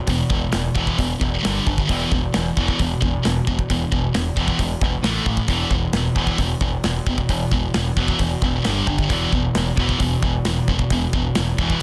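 Two electric guitars open together at 0.0 seconds on an E5 power chord, one a bright, high-gain distorted guitar sitting up front and the other a sludgy, overdriven picked guitar with a warmer edge, both driving the riff through the low register. A growling, picked electric bass with overdrive, direct and amped, joins almost at once to anchor the low end, while a polished modern studio drum kit with a tight kick, medium-tuned snare and hi-hat pushes a straight 4/4 pulse at 133 BPM. The kit sounds airy and up front in a small room, with soft clipping giving the snare extra bite. The riff in E minor circles around E5, stepping up to G5 and A5 before returning to E5. Light reverb and a dense, heavily limited modern master give this relentless, epic heavy metal clip, cut from a longer piece, a crushing, compact weight until it ends at 11.8 seconds.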